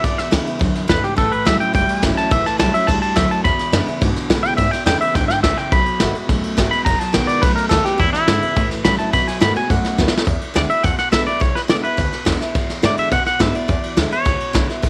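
A rowdy, rollicking rockabilly passage opens at full tilt, cut from a longer piece, with a clean, twangy lead electric guitar up front carrying the melody through tape echo over a bright, picked steel-string acoustic with audible finger squeak and a slightly broken-up electric riff sitting in the background until 10.2 seconds. Beneath them, a woody, thumpy upright bass on gut strings stays low in the mix while a vintage kit played with brushes, with a punchy kick, dark cymbals and a rolled-off top, drives the straight 4/4 from up front. A drum fill at 10.0 seconds ushers in a new section at 10.3 seconds, all set in light reverb and small-room ambience.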